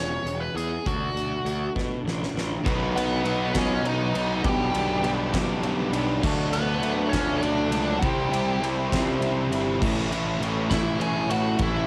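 A nasal, overdriven lead guitar with a parked wah sits up front over a growly fuzz bass and a twangy, tremolo-washed twelve-string electric guitar that arpeggiates only until 2.6 seconds, while a huge arena drum kit with a fat snare and punchy kick enters at 0.3 seconds and fills into the next section. This restless, anthemic excerpt of quiet-loud alternative rock moves in a slow 6/8 at 67 BPM, and at 2.7 seconds it opens into a heavy passage where a thick cassette-saturated fuzz guitar, a sludgy distorted guitar and a compressed, double-tracked fuzz guitar stack their riffs over chords moving from B through G/B, Dadd9 and C to A. A distant, reedy studio string section bowed with light vibrato holds sustained chords far beneath, all caught with light reverb on a homemade cassette recording.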